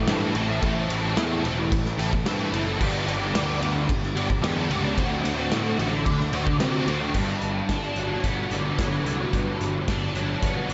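Shoegaze and dream pop rock at 110 BPM in G major, this dreamy, blissful fragment of a longer piece sets an up-front, double-tracked overdriven electric guitar riff with ensemble chorus over a dark, round fuzz bass and a loose acoustic indie kit with a punchy kick, medium-tuned snare and pumping small-room sound, in a mix soaked in lush 2.0-second hall reverb with a softened top end and faint mains hum, as the chords move from Am7 through G and D7 to Gmaj7 at 7.1 seconds.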